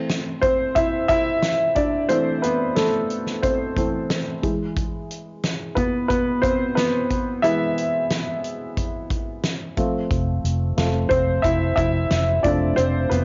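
A worn, woody, slightly detuned upright piano leads this earnest, driving piano-driven pop excerpt in A minor at 90 BPM, moving through Am, E and F over a natural country drum kit with a fat snare and punchy kick, while a dark, round, foam-muted electric bass enters at 10.1 seconds, all set in spring and small-room reverb on a homespun cassette recording with a dulled top end.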